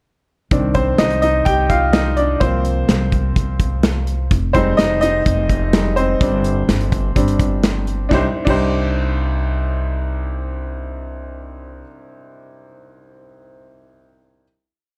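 The bright upright piano leads this short, complete piece of piano-driven pop in C minor, its brilliant, woody tone carrying a vintage edge as it plays close-voiced chords in a steady eighth-note rhythm and takes a solo through the verse. The mood is bittersweet yet driving, set at 126 BPM in a straight 4/4, with the harmony moving from Cmadd9 through C7sus4, Fm7 and Gsus4 before returning to Cmadd9. Underneath, an upright bass with gut strings sustains a round, thumpy, plucked line that sits up front. A modern studio drum kit recorded in a small room lays down a driving pop backbeat with a tight kick, a medium-tuned snare, hi-hat and crash cymbal, its sound dark with a rolled-off top. The drums stop at 8.6 seconds and the bass at 11.8 seconds, leaving the piano to let the final chord ring until 14.4 seconds under a light reverb.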